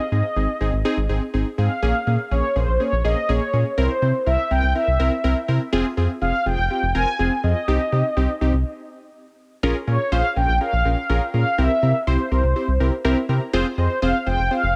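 A mellow synth brass melody opens this short, melancholic synth-pop passage in Bb dorian, brassy and dark with vibrato, chorus and a digital delay trailing its lines between C5 and Ab5. Almost at once, analog keys fill in the harmony with a full-bodied, detuned sawtooth tone that decays under a filter sweep, while a round analog bass sits deep and up front, its sine and triangle weight giving the groove its low end. At a driving 123 BPM in straight 4/4, the chords move from Ab through Bbm7, C7, Fm and Cm, then cycle back through Bbm7 and C7 to Fm. The band drops out in a stop from 8.7 to 9.6 seconds before the progression resumes, and a brief synth keys fill at 12.8 seconds leads into the closing Fm. Light reverb gives the parts a modest sense of space, and the passage is cut from a longer piece.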